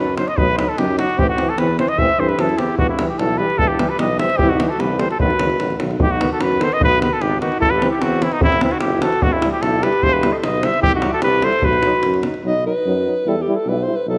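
Fiery and virtuosic, this Balkan brass band fragment drives along at 149 BPM in a straight 2/4, set in B phrygian dominant over a cycle that returns to B through Am, Em and C. A muted cornet carries the melody up front with a nasal, classical-style tone and a smooth top. A mellow alto saxophone with light vibrato and a soft attack joins on a second line at 2.0 s, sitting back in the blend. Behind them, a warm euphonium and a distant, roomy trombone fill out the accompaniment, while a clear tuba with a vintage edge anchors the bass. A tight, band-limited davul punches up front until 12.4 s, the cornet drops out at 12.2 s, and then the saxophone takes a brief solo from 12.4 s into a new section. A moderate scoring-stage reverb gives the band a sense of shared space, and the recording is cut from a longer piece.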